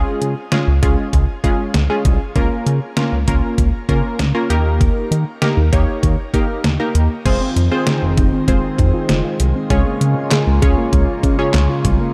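A straight 4/4 groove from a detuned, overdriven 8-bit drum machine, with thumpy kick, snare, hi-hat, handclaps and crash, drives this nocturnal, melancholic synth-pop cut from a longer piece, as a punchy, funky polysynth comp with chorus and shimmer reverb and a glossy, evolving chorused synth bass carry the Db, Bbm/Db and Eb chords until, at 7.3 seconds, a shimmering pulse-width pad with a slow attack and a soft, round pluck playing arpeggios in the background enter over Fm7 and Db6, within a dark, warm production with light reverb and digital ambience.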